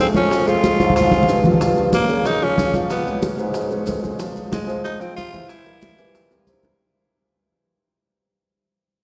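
A raspy, up-front tenor saxophone carries the melody in this sophisticated, driving Afro-Cuban jazz excerpt, over warm grand piano accompaniment, a mellow, distant bassoon bass with light vibrato, bright damped congas, tight high-tuned bongos and grainy maracas, all soaked in a cathedral-like reverb, with drum fills at 0.8 and 6.3 seconds and a fade-out starting at 1.6 seconds.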